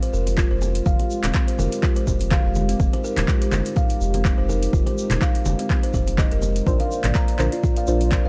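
Opening on a barely audible sub drop beneath a dark, detuned analog pad and a buzzing, woody kalimba arpeggio with tape echo, this earthy afro house excerpt settles into an overdriven, up-front electronic kick, an afro-pop kit of handclaps, metallic hats and toms, soft-handed congas, a grainy egg shaker and a round, pumping sub bass, before a deep mellow chord stab with phaser arrives at 6.7 s as the harmony shifts from Fmadd9 to Bbadd9, all set in a dry, gritty digital ambience.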